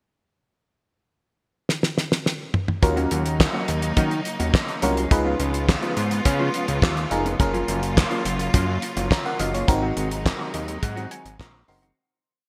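A late-night, danceable early-eighties boogie funk piece opens with a damped 70s drum kit rolling a fill from 1.7 seconds into a four-on-the-floor beat with a fat, clap-layered snare. At 2.8 seconds a saturated, detuned analog bass line, a glassy FM electric piano pushing rootless chords through chorus and phaser, lush bowed strings and a dark, choppy sixteenth-note guitar join in, and the piano adds short fills as the whole piece fades out from 9.7 seconds in a bright digital production.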